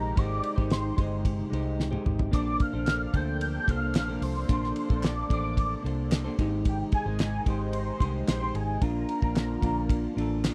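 A straight 4/4 groove from a cloth-damped, thuddy drum kit with a fat snare and dark cymbals enters at 0.2 s, with a short fill at 1.8 s, driving this sunny, dreamy indie and bedroom pop excerpt; a round, foam-muted fingered bass plays from the very start, and a crisp group handclap sits in the background from 2.9 s. Up front, a clean semi-hollow electric guitar plays with lush chorus and vibrato, while a swirling phased analog pad holds sustained chords behind it and a velvety synth lead carries the high melody with tremolo, ensemble chorus and tape echo over major-seventh and ninth harmony. The recording is dry and close, with little reverb, in a 1970s-style studio sound.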